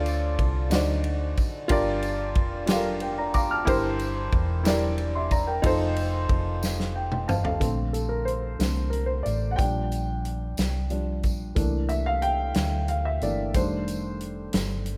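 Soulful and uplifting, this slow gospel excerpt in 6/8 at 61 BPM in Bb major sets a woody, slightly detuned upright piano up front over a dark, round hollow-body electric bass, a natural small-room drum kit with a punchy kick and ride cymbal, and a jingly, distant tambourine, as the piano adds fills at 2.7 and 6.6 seconds before taking a solo from 7.6 seconds over rich chords like Bbmaj9 and C13, all in light reverb.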